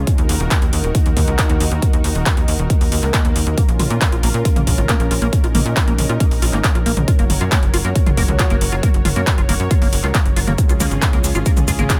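Bittersweet and driving, this uplifting trance fragment in Bb minor at 137 BPM sets a thick, detuned unison pad and a nasal, tightly plucked sequencer bass, both pumping under the sidechain, against a punchy, up-front electronic kick and a big-room kit of handclaps, metallic hats, shaker and toms, while a very quiet swell at 2.9 seconds ushers in a squelchy, resonant acid bass arpeggio from 3.6 seconds, coloured with phaser, analog chorus and tape echo, as the chords move from Ebm through Bbm and Gb to Db in a dry mix.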